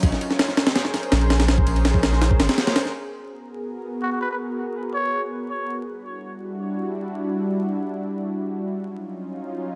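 A lush, detuned sawtooth pad with chorus opens this raw, nostalgic drum and bass cut at 165 BPM, joined at first by a deep, saturated sub bass and a gritty, pitched-up jungle sampler-style kit with a thumpy kick, snare and ride, both of which drop out by 2.9 s as the chords move from A#m9 through G#m9, Em9 and D#m9, before a veiled, raspy cup-mute trumpet with dub echo and light vibrato plays a brief jazz-style solo from 4.0 s against vinyl crackle in a moderate plate reverb.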